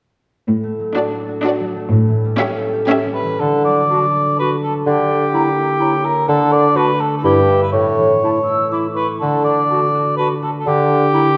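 A ringing, fingerpicked concert harp opens this playful, whimsical film cue in triple time with arpeggios, alongside a lush, up-front cello section holding the bass from 0.5 s, while bowed violin sections and a focused viola section add a brief, vibrato-laden melody and inner lines. From 3.1 s a dark, distant-sounding cor anglais comes forward over a vintage-toned bassoon, with a present clarinet and a pure, close-miked flute section tucked in the background, giving the passage a magical, quirky character. A wet scoring-stage reverb surrounds the ensemble in this snippet from a longer piece.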